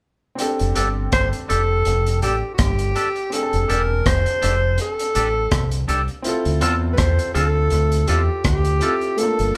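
Recorded as a band playing live in one room with moderate studio reverb, this sweet, tender lovers rock reggae excerpt at 82 BPM in F major sets a breathy alto saxophone melody with light vibrato and scooped notes, entering at 1.1 s, over a gritty breakbeat kit of hi-hat, kick drum and rim click and a warm concert grand piano with audible action noise, both carrying dub echo, while a deep, round fingered electric bass sits up front and a twangy, clean electric guitar adds stabs as F69 moves to Dm7 at 6.3 s.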